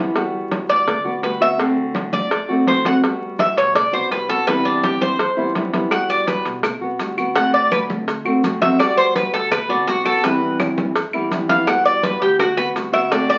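Relaxed and warm, this fragment of Cuban son and guajira puts a bright, metallic Cuban tres up front, playing a solo of picked double-string arpeggios over a fingerpicked nylon-string guitar with audible finger squeak, while a woody pizzicato upright bass sits in the background. Thick-skinned congas played with soft hands and a tight, high-tuned cowbell struck hard fill out the groove, joined at 5.9 s by woody claves and grainy maracas beneath a gently cycling Gmaj7, D7 and Cmaj7 progression. A wet small-room reverb and the crackle and muffled top end of a very old 78 rpm record give the sound an aged, intimate character.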